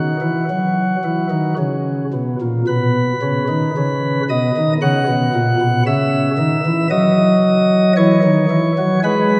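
Serene and majestic, this brief classical chorale-style fragment for solo chamber organ moves at a rubato 57 BPM in 4/4, its light, bright flute stops sparkling with a chiff up front across a range from A#2 to F#5, as chords pass from F# through B and C#m to an open F#5, all carried on a wet church reverb with a 3.6-second tail heard from further back in the room, in a tuning of A4 = 441 Hz.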